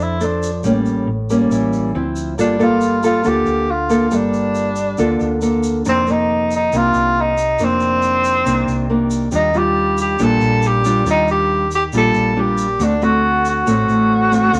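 This intimate, smooth bossa nova opens with all four parts at once: a mellow tenor saxophone carrying the melody in jazz style over fingerpicked nylon-string guitar, electric bass and egg shaker. The saxophone sits up front yet sounds distant and roomy, its subtone touched with vibrato as it plays solo lines in a middling register. The guitar is equally forward, small and acoustic in tone, while the harmony opens on a rootless Bbmaj9 before moving through A7b9 and Dm9 in a brief opening passage. From 2.4 s a longer passage unfolds over Gm9, F7sus4, Ebmaj9 and D7, while the hollow-body bass stays low in the mix with a dark, round, punchy amped sound and the grainy, bright, band-limited shaker adds a faint vintage texture underneath. A moderate studio reverb gives the whole a gentle sense of space, and the recording is cut from a longer piece.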